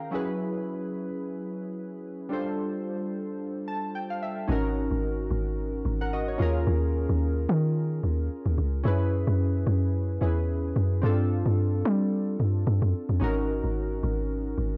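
Amapiano with a soulful, deep mood and a lightly swung sixteenth-note feel, cut from a longer piece and captured as a dry home recording on cassette. Detuned, chorused analog keys blending square and sawtooth tones play sus4 ninth chords up front from the start, with a filter sweep and a synth keys fill at 3.4 seconds leading into the drop. At 4.5 seconds a dark, round log drum bass with a fast, percussive FM attack and a noise layer enters prominently beneath the keys and plays through to the end.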